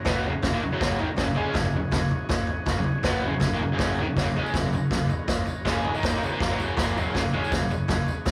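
Raw and swaggering, this garage rock clip is cut from a longer piece and charges along at 161 BPM in a straight 4/4, sitting on an F# major chord in a tuning pitched at A4 = 441 Hz. Up front, a raw garage drum kit pounds out a boomy kick, a medium-tuned snare and toms with a saturated, gritty, mid-forward character and a rolled-off top. Beside it, an overdriven electric guitar plays a picked, double-tracked riff spanning F#2 to D#4 with a warm, overdriven tone. In the background, a vintage combo organ holds buzzy, clean sustained chords between C#4 and A#4, colored by a light vibrato. A jingly, band-limited tambourine slips in at 4.3 seconds, also tucked behind the band. The whole group sounds like it is playing live in one room, with a moderate studio reverb adding a touch of space.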